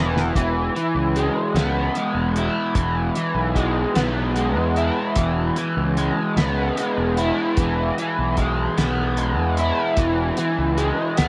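A slow 6/8 pulse at 50 dotted-quarter beats per minute sets a hazy, hypnotic psychedelic rock groove in E major, in this clip cut from a longer piece. A brief drum fill opens the clip, and the cloth-damped drum kit comes in at 0.2 s with a thuddy, dry sound: a fat snare, a tight kick and hi-hat, all dark and smooth with a rolled-off top. Up front, a crunchy overdriven electric guitar plays a picked, double-tracked riff with a flanger giving it a swirling edge. Beside it, a fuzz fingered electric bass sits just as forward, round and dark, its direct-and-amped tone thickened by overdrive and transformer saturation. From 0.4 s the band settles onto an E chord, all within a moderate echo chamber reverb that gives the mix a dim, roomy glow.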